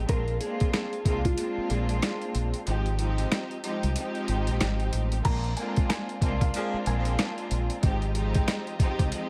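Moody and dark, this boom-bap hip-hop fragment rides a swung sixteenth-note groove in four, taken from a longer piece and framed by a bed of vinyl crackle with light reverb. A gritty, sampler-style drum kit sits up front, pitched down and compressed with a thumpy kick, a medium-tuned snare, hi-hat, rim click and crash, its tape-warm grit joined by a round, deep fingered electric bass; the kick drops out between 2.7 and 5.2 seconds. A close, intimate string section bows soft-attack sul tasto chords with vibrato through plate reverb, while a clean, dark electric guitar carries the melody in the background, colored by phaser, plate reverb and digital delay. At 5.2 seconds a second, very quiet string section adds lush sustained chords above, and a clear saxophone section punctuates with brief pop-style stabs from 5.6 to 6.8 seconds, washed in plate reverb and delay. The harmony alternates between Bb7 and Fm7/Ab throughout.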